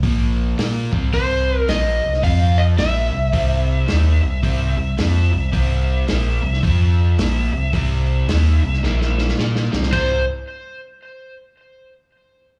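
A gritty, swaggering blues rock groove with a southern rock edge opens at once on a bright, crunchy overdriven guitar riff, double-tracked and picked, with slapback echo, over a deep, clean sine sub bass that sits up front and a vintage acoustic drum kit. The tempo is a swung 109 BPM in 4/4, centred on C mixolydian, with the drums sounding lo-fi and muffled, with dark cymbals, a medium-tuned snare and a punchy kick. At 1.1 seconds a dark, overdriven slide guitar enters with the melody, played with the fingers and carrying slapback echo and digital delay. A drum fill arrives at 8.8 seconds, leading into a new section at 9.9 seconds as the harmony returns to C. The whole performance is heard as a live club gig through the venue's PA, wrapped in small room reverb and club ambience, and is cut from a longer piece.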